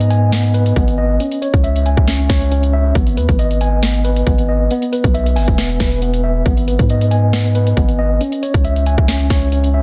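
Hip hop trap in G# minor at 137 BPM with a half-time feel, this eerie, brooding fragment of a longer piece pairs mellow, clean tine electric piano arpeggios with delay against a deep, long-sustained sine 808-style bass with a fast attack and an overdriven, up-front trap drum kit of hard-clipped kick, sharp snare and metallic hi-hats, all in a dry, dense, heavily limited modern master.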